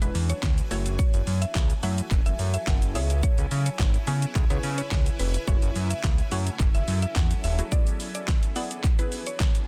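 A straight 4/4 dance-pop groove with a punchy kick, fat snare, metallic hats, handclaps and shaker drives this confident clip, as a thick sawtooth analog bass with a moving filter notch drops out at 7.6 seconds beneath detuned, sidechain-pumped chord stabs, a woody, mellow FM mallet pluck carrying the melody through tape echo, and a shimmering, ethereal pad glazed with phaser and reverb, all pressed into a dense, heavily limited modern master.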